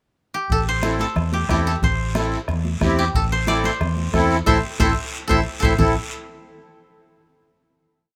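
A brief pickup from the koto opens this short, complete cumbia piece at 181 BPM in A minor, its fingerpicked, woody tone sitting dry and up front as it states call-like motifs between G4 and E5. At 0.5 seconds the band settles onto A minor: a dark, foam-muted vintage electric bass plays a round cumbia figure, while a soft-beatered bombo with rim strokes and high-tuned, damped congas sit in the background. A raspy guiro scrapes long and short strokes low in the mix, and from 0.8 seconds a close-miked accordion adds sweet, reedy triad chords with a light tremolo tuning. The mood is passionate and driving, with a full-band accent from 4.5 to 5.8 seconds leading into a final chord. A light reverb gives the whole a modest sense of space.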